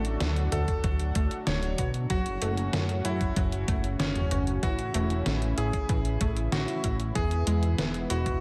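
A glossy, nasal chorused synth bass sits up front in this moody, nostalgic synthwave excerpt at 95 BPM in 4/4 and F# minor. Its pulse-wave and sawtooth tone is shaped by a filter pluck and a moving notch, with sidechain pumping. Above it, a bright electric grand piano carries the melody between C#4 and C#5, its cutting, vintage tone colored by tape echo and slapback echo. A lush, airy unison pad holds sustained chords with chorus and its own sidechain pumping, while a round analog pluck plays arpeggios in the background through chorus, delay and slapback echo. The detuned 8-bit digital drum machine supplies hi-hat, toms and a fat snare with a tape-tinged, small-room character, and a thumpy electronic kick drum joins at 0.7 s. Under light reverb, the chords move from D to F#m, A and E through to 8.4 s.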